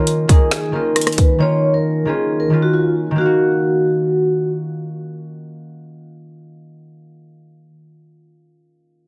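A soft-mallet vibraphone with a slow motor vibrato rings out a mellow, boxy melody over fingerpicked concert harp, both low-pass filtered, the harp sitting up front, with tape echo trailing the vibraphone in this melancholic half-time trap fragment. A hard-hitting electronic kit of clipped kick, woody snare, metallic hats, rim clicks and finger snaps punches in up front only until 1.3 seconds. The vibraphone falls away at 4.5 seconds, leaving the ringing acoustic harp alone until 7.8 seconds, all within a dry, dense, heavily limited mix.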